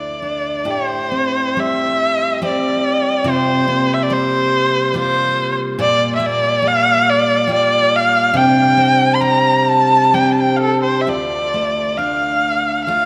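Bathed in a wet church reverb, this mournful, longing Celtic slow air in a rubato 3/4 pairs a single rich, focused bowed erhu, singing the melody up front with vibrato and portamento, with a full-bodied picked steel-string acoustic guitar accompaniment, moving into a new section at 11.1 s before the excerpt is cut from the longer piece.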